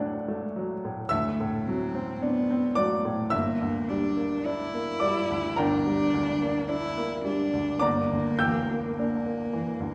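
A clear, intimate baby grand piano opens this serene romantic classical fragment for cello and piano, its short sustain and audible action noise sitting up front as it moves from D to D7 in a slow, rubato 4/4 around 54 BPM. At 1.1 seconds a single bowed cello enters with a woody, close-miked melody full of vibrato, carrying the tune in its middle range while the harmony shifts to Em7b5/G at 3.3 seconds. A recital hall reverb frames the duo, the room itself sounding as if heard from further back.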